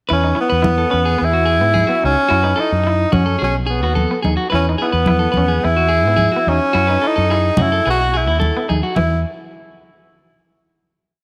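Joyful and warm, this short highlife guitar band piece at 108 BPM in E major puts a clear, punchy tenor saxophone with vibrato and slapback echo up front, singing motif-based phrases over a dark, round, syncopated fingered electric bass riff, a compressed clean electric guitar picking an arpeggiated ostinato with its own slapback echo, a twangy, slightly broken-up electric guitar ostinato with tremolo in the background, and bright, dry congas, set in a moderate echo-chamber reverb and closing on a final chord at 9.0 seconds.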